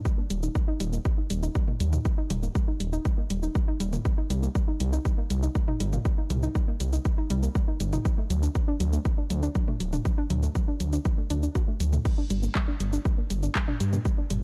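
Melodic techno at 120 BPM in a straight 4/4, this hypnotic, driving cut from a longer piece moves through Eb, Cm, D and Gm under a dark production with digital ambience. An overdriven, layered electronic kick sits up front with a room-recorded punch, joined by a tape-warm analog drum machine of crash cymbal, handclaps, hi-hat, shaker and toms, while a menacing, saturated detuned saw bass with a filter swell pumps to the sidechain, also up front. Above them, a soft, round pluck plays warbling arpeggios through chorus and digital delay, breathing with its own sidechain pumping.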